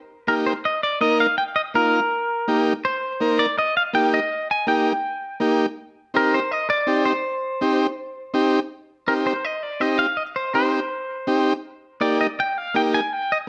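A straight, danceable 4/4 pulse at 164 BPM drives this passionate Latin excerpt in C minor, tuned to A4 = 442 Hz, as an up-front, twangy clean electric guitar carries a bright, picked, compressed melody through spring and plate reverb from 0.3 s, while a buzzy vintage combo organ with light vibrato supplies the accompaniment until 13.0 s over Eb and C minor harmony, captured with close, detailed microphones and light reverb.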